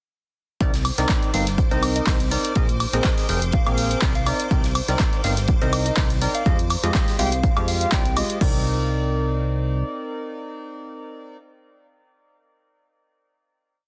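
Piano house at 123 BPM in C minor, energetic and bittersweet, built on a punchy four-on-the-floor electronic kick, tape-warm programmed hats, claps, woodblock and crash, a faint gated, airy breakbeat loop, and a funky, plucky sawtooth bass with sidechain pumping moving through Cm9, Bb9sus4 and Fm9. A hollow, organ-like stab carries the dotted-rhythm riff with lush chorus, cassette tape character and dub echo, while shimmering string-machine violins hold sustained high chords in the background and a round, warbling FM lead with 12-bit grit adds short answering phrases from 1.7 seconds. The drop runs from 0.6 to 8.4 seconds, after which the bass and organ stab carry into a final Cm9 chord, the bass fading by 9.8 seconds and the stab ringing on until 11.4 seconds, in a dense, heavily limited master with light reverb.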